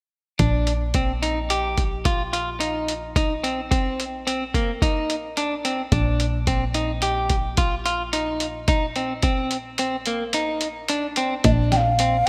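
A bright 1980s-style digital sheen and a lush hall reverb frame this short passage of progressive instrumental band music, cut from a longer piece and set in 5/4 at 108 BPM with a straight, driving feel in Bb major. From 0.4 s, a clean, up-front electric guitar picks compressed arpeggios through a delay over a Bbsus24 chord. Beneath it, a plucky analog bass holds Bb1 with a punchy, funky, sawtooth-edged tone and a fast-attack, decaying filter pluck. A lo-fi sampler-style kit of hi-hat, thumpy kick and fat snare sits up front with a muffled, overdriven grit. Near the close, at 11.4 s, a hollow wooden flute slips in with an airy, vibrato-tinged line between Eb5 and G5, its soft attack and rolled-off highs adding a gentle lift to the bright, energetic mood before the passage ends at 12.3 s.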